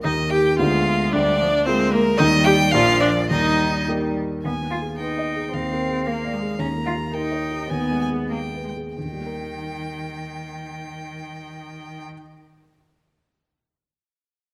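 In a 2/4 with a rubato feel, this graceful, spirited classical-period movement for piano quartet, cut from a longer piece, sets an up-front violin's clear melody with vibrato over short-sustain grand piano accompaniment, while a close viola adds rich bowed support until 3.9 seconds and a distant cello enters with a smooth second line at 0.6 seconds, the music slowing between 6.1 and 9.0 seconds in a moderate scoring-stage reverb.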